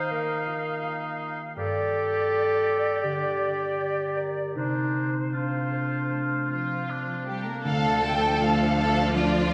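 Bright, ringing concert harp arpeggios run through this bittersweet, longing cinematic orchestral excerpt in D phrygian, a rubato 4/4 at about 77-83 BPM, where a mellow, distant solo clarinet, an airy small flute group and a roomy solo oboe carry second lines over Ebadd9, Gm and Dm7 until a rich, up-front violin section and a smooth cello section join at 6.5 s, then at 7.7 s an expressive violin section takes the melody with vibrato and portamento over lush violas, a bowed double bass section holding D2 and a closing Dm chord, set in a wet scoring-stage reverb.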